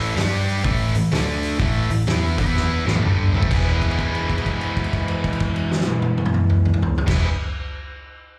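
Swaggering and driving, this short excerpt of swung blues rock and southern rock at 126 BPM in E mixolydian heard through a club PA sets a bright, overdriven, double-tracked stack guitar riff with slapback echo up front over a round, foam-muted vintage electric bass and an oversized low-tuned drum kit with a fat snare, boomy kick and dusky cymbals, as a drum fill at 2.5 seconds leads into a held note from 3.5 seconds.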